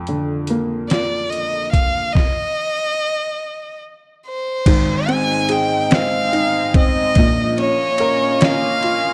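A clear, woody upright piano opens this tender, swaying pop ballad in a lilting six-eight, joined almost at once by a gritty, sampler-style trip hop drum kit that sounds compressed and pitched down, with a thumpy kick, a medium-tuned snare, hi-hat, ride and crash. A rich, focused solo violin soon carries the melody with bowed vibrato, sitting up front alongside the piano and drums. A stop from 2.2 to 4.7 seconds leaves an unharmonised gap before the second section arrives. From 4.7 seconds a bright, resonant pad enters beneath, its evolving sawtooth and triangle tones wave-folded and shaped by a slow attack, a filter swell, chorus, phaser and a long release as it sustains chords. Light reverb and a digital ambience frame this short fragment of a longer piece.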